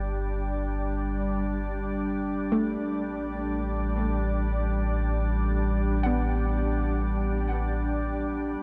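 A vast, wet reverb with a seven-second tail surrounds this ambient excerpt, and a faint mains hum sits beneath it. The music floats in free time with a weightless, luminous mood. A deep, round sub bass and a calm, organ-like drone hold the front from the opening, the drone slow to bloom and long to fade, thickened by ensemble chorus and its own detuned unison shimmer. At 2.5 seconds a soft, gentle pluck enters in the background with arpeggios, its dark tone blurred by lush chorus and a diffuse ambient delay. The harmony rests on Gsus2 before shifting to A9sus4 at 2.8 seconds, leaving the sound suspended and open.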